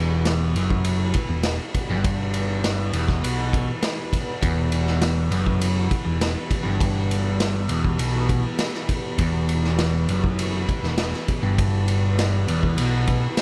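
A straight 4/4 pulse at 101 BPM drives this trippy, hypnotic psychedelic rock passage in E minor, where a crunchy, double-tracked overdriven guitar riff through phaser sits low beside a round, amped hollow-body electric bass, and a vintage drum kit joins at 0.3 s with punchy kick, snare and dark ride in a small, pumping room, while a buzzing, shimmering tanpura drone hums along and a lush sawtooth string machine with ensemble chorus holds one Em chord in the background under light studio reverb.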